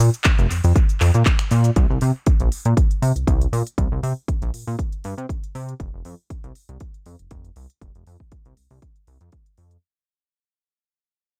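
A glossy, nasal chorused synth bass with a retro pulse-wave and sawtooth bite opens this groovy, cosmic nu-disco excerpt at 119 BPM, with a slight 16th-note swing, alongside a house kit of finger snaps, handclaps, a shaker and crisp hats washed in dub echo. A punchy, up-front electronic kick joins at 0.3 seconds, and the whole echo-heavy, digitally ambient passage fades out across its length.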